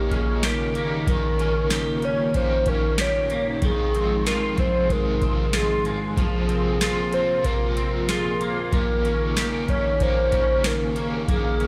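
A hollow, woody clarinet-like synth lead with vibrato carries the melody through this ethereal, floating dream pop excerpt, trailed by chorus and delay. Beneath it, a crunchy overdriven guitar plays with tremolo and lush chorus, a twangy clean electric guitar picks arpeggios through delay, and a soft, dark pad sustains chords moving from Eb7/Bb to Ab6 and Bbsus2 before returning. An up-front analog drum machine enters at 0.1 seconds with a deep kick, crisp snare and metallic hats, all set in a large studio reverb as if played on a big sound system in a bare room.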